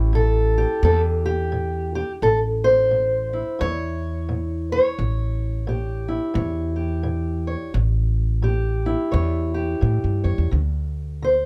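An acoustic country blues fragment opens on an A7 chord, with a fingerpicked steel-string acoustic guitar and an upright bass sounding together from the first moment. The mood is swaggering and soulful, moving at 87 BPM in 4/4 with a swung eighth-note feel in A mixolydian. The guitar carries the melody with a boxy, parlour-sized tone, sitting up front and ranging from A2 to C#5. Beneath it, the pizzicato upright bass on gut strings gives a woody, thumpy foundation between A1 and A2, also placed up front. A light reverb surrounds the pair, and at 10.5 seconds the harmony shifts to a D5 before the cut ends at 11.5 seconds.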